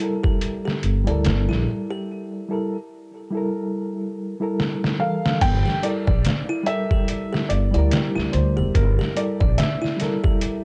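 Pitched-down, muffled sampler-style drums with a thumpy kick and gritty overdrive sit up front in this dark, cinematic trip hop excerpt at 72 BPM, swinging in G dorian over a Gm69 chord and easing into a break capped by a fill at 4.6 seconds. A woody, gut-strung upright bass, plucked pizzicato, joins at 0.8 seconds beneath a reedy electric piano shimmering with fast tremolo and tape echo, while a delicate, slightly out-of-tune music box tinkles arpeggios through its own tape echo. At 5.0 seconds a soft, thick-felted upright piano takes the melody, its intimate tone trailing dub echo across the dim, lightly reverberant mix.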